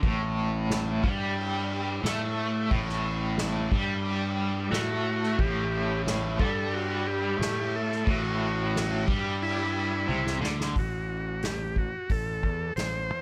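A hypnotic, mysterious psychedelic rock excerpt at 90 BPM in A dorian opens with a bright, double-tracked overdriven guitar riff with tremolo, a round, fuzzy fingered bass and a distant, roomy soft-mallet drum kit with a punchy kick. A reedy vintage combo organ enters at 4.7 seconds carrying the melody with heavy vibrato and analog delay, and a drum fill at 10.1 seconds leads into an A5 chord as the guitar drops out at 10.7 seconds, all in a dry mix.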